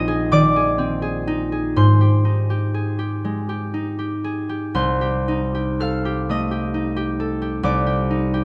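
In a rubato 6/8, this gentle, wistful classical excerpt features a solo concert harp, fingerpicked, ringing and up front, spanning Bb1 to F6 over chords moving from Bb9sus4 through Abmaj7 and Cm6 to F7sus2/C, all held in the wet reverb of a recital hall with a dark, warm production.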